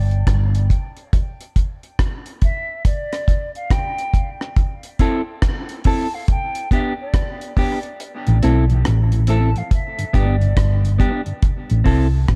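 A slow 70 BPM dub reggae groove in 4/4, with swung sixteenths, sits in A minor and carries a meditative, deep mood. A dry, up-front drum kit of hi-hat, tight kick and rim click anchors a distant, pure concert flute melody trailing dub echo, while a round hollow-body bass sounds briefly at the start and returns at 8.3 seconds. A clean, fingered electric guitar joins at 5.0 seconds with its own echo, and a soft tonewheel organ with chorus vibrato and key click hovers in the background from 8.3 seconds over chords moving between Am and G, all within a small room and a dark, warm production.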